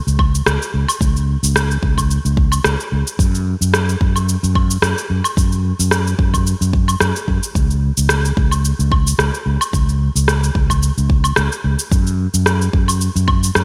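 Organic downtempo with a meditative, hypnotic pull, this excerpt sets a growly, amped fretless electric bass up front over a deep, tape-touched electronic kick and a forward mix of electronic cabasa, woodblock and rim click wrapped in gated reverb, all framed by bright 1980s-style digital production, light reverb and digital ambience.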